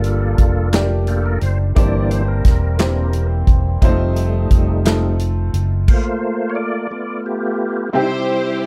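A slow 6/8 gospel sway carries this soulful, hopeful passage, with a punchy, small-room country drum kit and a dark, round fingered electric bass up front, hollow group handclaps, and a woody, boxy upright piano accompanying. The featured tonewheel organ holds clear sustained chords through a fast rotary speaker with chorus vibrato and key click, while a distant French horn section pads softly in the background. Around 6 seconds the horns, bass and drums drop out, leaving organ and piano in a brief break before a lush, bowed string section takes the melody at 8.0 seconds, all set in a studio reverb.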